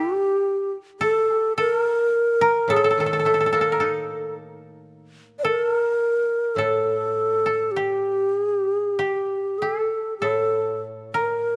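A breathy, end-blown shakuhachi carries the melody in long, straight-toned lines with a soft attack, sitting close and up front in this austere, calm piece of Japanese chamber music, taken from a longer work and moving freely in rubato at around 47-55 BPM. A woody koto played with fingerpicks traces a second line beside it from the start, and a mellow, dry second koto joins with lower accompaniment at 2.7 seconds. Close, detailed microphones and light reverb keep the bamboo breath and plucked strings intimate.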